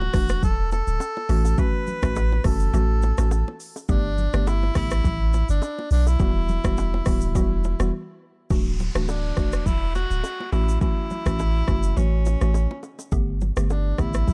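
A breathy, whispered tenor saxophone leads this hypnotic, mellow afrobeats excerpt, singing an intimate pop-style solo line with light vibrato over a woody, round synth pluck that warbles through a chorus effect. A punchy sine sub bass sits up front with a pitch-drop attack, while close, dry bongos and congas tick along in the background. From 0.1 seconds a layered deep house kit adds a deep kick, smooth hats, rim click and shaker, its overdriven edge adding grit as the groove carries a gentle swing. The chords drift from Dadd9 through A6 and Gadd9 to Emadd9 before a short break at 7.9 seconds. When the second section begins at 8.5 seconds, an electronic downlifter slips in quietly behind the band as the progression starts again. The production is dark and dry, keeping the saxophone close and personal.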